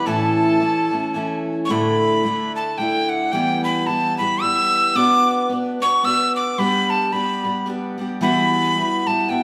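A breathy metal whistle carries the melody up front, its tongued notes full of chiff and unsteady, in this cheerful Celtic folk excerpt at 110 BPM in a swung 3/4. A reedy, gut-string fiddle plays a second line in the background only until 1.5 s. Meanwhile a picked steel-string acoustic guitar sits forward with a warm concert tone beneath chords moving from A through Dsus2, Em, Bm and G to Emadd9, all from a band playing live together in one room and bathed in a large studio reverb.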